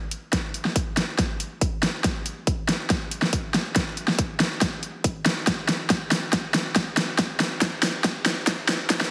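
Heavily compressed and thin like a radio broadcast, washed in a wet digital room reverb, this heavy, chaotic dubstep excerpt in half-time is an all-drum build-up, with an up-front, overdriven big-room dance kit pushing a huge snare and hi-hat through a fill that runs its whole length from 0.1 seconds, underpinned from 0.3 seconds by a layered, punchy, overdriven electronic kick.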